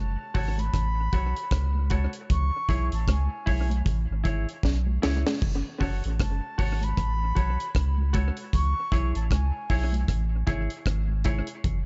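Swung sixteenths carry this meditative, serious roots reggae excerpt, where a dry, dark drum kit with a high-tuned snare and tight kick sits up front under analog delay and plays a fill at 4.6 seconds, a round sine sub bass anchors the low end, a clean, compressed, fingered electric guitar accompanies through tape echo, bright thin-skinned congas sit in the background, and a distant, airy flute carries the melody through tape echo until 10.0 seconds, all within an echo-heavy, dull-topped mix with little reverb.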